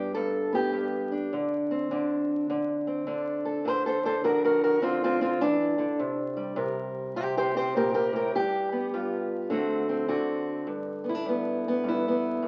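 Rollicking and gritty, this short cut from a longer acoustic country blues piece swings along at 103 BPM in G major. A lone fingerpicked, ladder-braced acoustic guitar sits up front with a dark, woody, boxy voice and the dull bite of old strings, working through G, D7, C5, G7 and D7 again before landing back on G at 10.7 seconds. A large studio reverb and the crackle of a very old 78 rpm record lend the sound its aged, roomy character.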